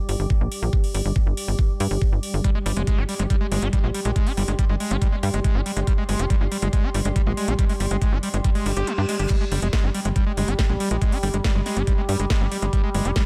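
A squelchy, screaming acid line, distorted and resonant with a filter sweep, chorus and delay, cuts in at 2.4 seconds in this intense, alien psychedelic trance excerpt at 140 BPM in a straight 4/4, pumping against the sidechain. Beneath it, a tight, punchy sequencer bass built from sawtooth and square waves with ring modulation and a plucked filter drives hard and up front, its tube saturation adding grit. A knocking electronic kick sits forward in the mix, joined by a drum-and-bass style kit with a cracking snare, metallic hats and crash cymbal, both tape-tinged and re-recorded in a small room. A deep, moody pad of detuned sawtooth and sine layers with a sub octave hovers darkly in chorus and reverb, and a nasal drone with moving overtones enters in the background at 9.9 seconds. Just before that, a reverse cymbal sweeps in at 8.6 seconds as the kick briefly drops out, all set in a digital ambience and tuned slightly sharp at A4 = 441 Hz.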